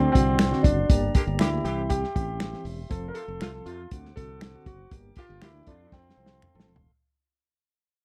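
A dark, lightly reverberant production frames this joyful, uplifting snippet of uptempo 1960s-style soul in F major at 119 BPM. Its fade runs throughout, and a mellow concert grand carries the melody up front over a gritty, reedy electric piano with medium tremolo, clean organ chords with key click in the background, and a bright, direct fingered bass. A dry, muffled drum kit with a tight kick and a close finger snap drive the groove, while a bright saxophone section with a smooth top and tape echo adds a second line from 1.1 seconds, before a drum fill at 5.9 seconds as the D7, Gm, C and F changes cycle.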